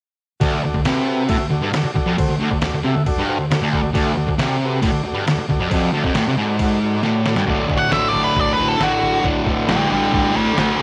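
Garage rock with a raw, swaggering mood, built on a bright, double-tracked fuzz guitar riff up front, mellow vintage combo organ chords with light vibrato, and gritty, pitched-down sampler-style drums with a thumpy kick; a drum fill at 7.0 seconds ushers in a dark octave-fuzz lead guitar melody at 7.8 seconds, all set in a digital ambience.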